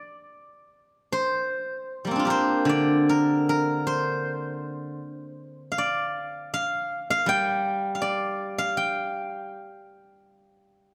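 A bright, silvery steel-string zither played with fingerpicks rings out alone and up front from the start until 10.3 seconds in this elegant, contemplative excerpt of Chinese traditional solo plucked-string music, its freely timed phrases spanning low to high registers and sitting in a moderate scoring-stage reverb.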